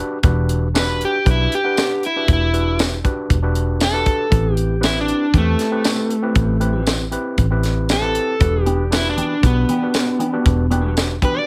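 A lightly reverberant, close-sounding mix opens this short cut from a longer straight-eighth soul blues in E minor at 118 BPM, soulful and mournful as it moves from Em7 to Am7 and back. An overdriven, hollow-bodied semi-hollow guitar carries the picked melody up front. Behind it, a gritty tine electric piano with plate reverb plays accompaniment, a round, foam-muted vintage bass holds the low end, and a tight small-room funk kit keeps time with hi-hat, a tight kick, a high-tuned snare and tambourine. At 8.7 s a clean, compressed electric guitar adds dark stabs colored by phaser, slapback echo and plate reverb.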